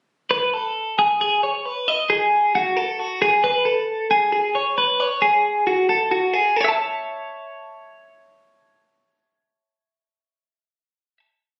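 Wistful, bright rock in A major and 7/8 at 269 BPM (eighths), played entirely by a solo twelve-string electric guitar whose clean, twangy, compressed, up-front picked ostinato moves through Amaj7, G#5, C#5 and A6 before settling on an A chord at 6.6 seconds, all heard in a moderate studio ambience with the phone-in-the-room feel of the recording.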